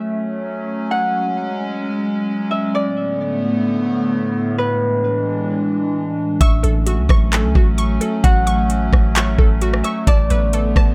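Lightly reverberant and hazy, this blissful, dreamy stretch of atmospheric cloud-rap sits in A major at 131 BPM with a half-time feel, opening at 0.0 s on a warbling, nostalgic, lo-fi pad, detuned and mellow with chorus, phaser and sidechain pumping, beneath a bright, ringing acoustic Celtic harp melody trailed by digital delay. At 6.4 s a smooth electronic R&B kit with a knocking kick, metallic hats, handclaps and rim clicks arrives up front, alongside a deep, round, soft 808-style bass and a glassy, crystalline wavetable pluck spinning arpeggios through chorus, delay and a filter sweep. The harmony drifts from A6 through Bm7/A and E7/A, each chord voiced over A.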